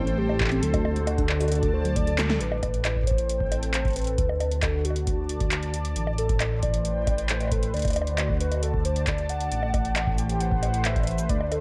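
A dark, lightly reverberant mix frames this intricate, glitchy IDM passage at 135 BPM in A dorian, where a warbling, nostalgic lead with chorus and tape echo sings over a smooth, ring-modulated analog pad; a detuned, rumbling saw bass sits up front, a dusty lo-fi pluck with digital delay arpeggiates in the background until 2.3 s, and an analog drum machine of bongos, cabasa, handclaps, metallic hi-hat and punchy snare is soon joined by a deep electronic kick, with a drum fill and band accent at 2.2 s as the chords alternate between Am7 and D.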